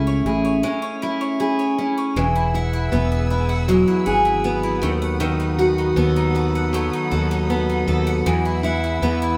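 Acoustic pop with a carefree, easy-going mood, moving at an unhurried pace in a straight four-beat feel. A picked steel-string acoustic guitar carries the accompaniment up front, its tone carrying a hint of finger squeak, while a bowl-back mandolin spins bright arpeggios from its doubled strings. Beneath them, a mellow fretless electric bass sits close and direct, with a dark, round low end. A break falls between 0.6 and 2.2 seconds, after which a studio string section enters with lush, bowed sustained chords, smooth and even with gentle vibrato. The harmony moves from Amaj7 to Eadd9, passes through B7/D#, and returns to Eadd9 as this short cut from a longer piece closes, all heard as a band playing live in a stone room with moderate reverb.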